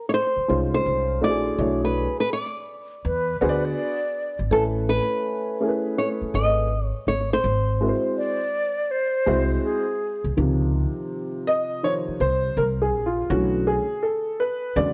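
Hip hop with a warm, smooth mood and a swung feel, this excerpt opens on a small, fingerpicked nylon-string guitar melody with audible finger squeak and slapback echo, carried over woody pizzicato upright bass and a dark, mellow upright piano, all sitting up front in light reverb and studio ambience. From 3.1 seconds an airy, hollow concert flute adds a tongued second line with vibrato over jazzy ninth and eleventh chords, while the guitar drops out at 9.6 seconds. At 10.4 seconds the piano takes a solo over the bass until the cut.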